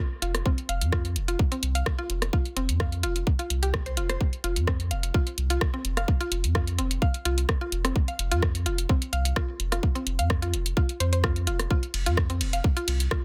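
A deep, round analog bass with a filter sweep and sidechain pumping anchors this cool, clinical minimal techno excerpt at 128 BPM in straight 4/4, alongside a woody, mallet-like synth pluck riff that is treated with chorus, delay and the same pumping. A garage drum kit of hi-hat, ride cymbal and rim click, with soft clipping on the snare, sits up front, and a tight electronic kick enters at 0.5 s. The sound is dry, dense and heavily limited, and the passage is cut from a longer piece.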